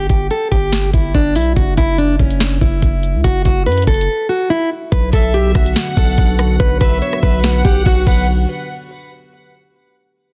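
Hip hop in a trap style, this dark, brooding passage moves with a half-time feel and is cut from a longer piece. A fingerpicked, plugged-in steel-string acoustic guitar carries the melody up front, its fresh strings sounding full-bodied through a low-pass filter and digital delay. Beneath it, a long, sine-toned 808-style bass with a fast attack decays deep in the low end. The electronic trap kit sits forward in the mix with a knocking kick, sharp snare, rim click, bright hi-hats and crash cymbal. After a brief break near 4.1 seconds, a moody, detuned sawtooth pad with a slow attack and chorus settles into the background at 4.9 seconds, and a biting studio violin section joins at 5.1 seconds with light vibrato and digital delay on a high second line. The recording is set in digital ambience and given a dense, heavily limited modern master.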